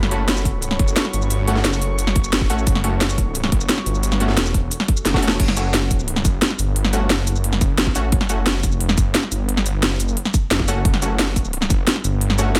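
A moody, deep pad with chorus and sidechain pumping sits in the background over a thick, detuned saw bass and up-front drums with a cracking snare and crisp hats, while bold, nasal orchestra-hit-like stabs ring out with dub echo and a tight electronic kick joins at 0.5 seconds, giving this excerpt of dark technical drum and bass a tense, futuristic edge as the pad drops out at 5.4 seconds just after a drum fill.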